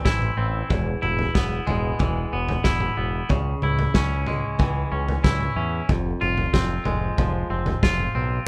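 Quiet-loud alternative rock with a cathartic, angsty mood, heard as a short cut from a longer piece in which the band plays live together in one room with light reverb. A bright, clean, twangy electric guitar sits up front with a scooped tone, picking arpeggios over chords that move from Am and E to C#m and Fm. Beneath it, a growling picked bass adds overdriven grit, while a loose indie drum kit with a tight kick, medium-tuned snare, toms and a rolled-off top drives a straight 4/4 feel until the drums drop out at 8.1 seconds.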